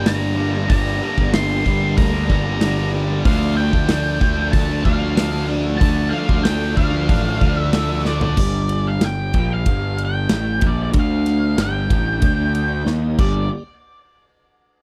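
This dry, close recording has a 1970s studio feel, with a gritty, swaggering classic rock groove cut from a longer piece. Up front, an acoustic rock kit drives the band with a punchy kick, a medium-tuned snare and crashing cymbals, and plays fills at 8.1 and 12.9 seconds. Beside it, an overdriven electric bass sounds round and warm with fuzz, while a double-tracked crunchy guitar riff sits bright in the background and a tight, double-tracked distorted guitar adds a second riff until 8.4 seconds. Over the top, a dark octave-fuzz lead guitar carries the melody, and a very quiet, piping tonewheel organ holds sustained chords through a fast-spinning rotary speaker. The harmony rocks between G minor and D minor before tightening into quick power-chord moves near the end.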